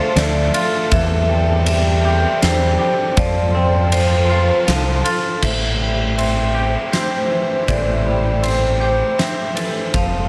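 Lush bowed strings sit in the background while a twangy, clean electric guitar and a ringing, metallic vibraphone struck with hard mallets weave arpeggios through tape echo. Within 0.2 seconds a growling, overdriven fingered bass and a huge arena drum kit with a fat snare, punchy kick and bright crash and ride cymbals push up front in this melancholic, cinematic post-rock passage in 3/4. The chords move from Dm through Am7/E and F before settling on Am7 at 5.4 seconds, and a moderate large studio reverb gives the whole band a sense of space in this fragment of a longer piece.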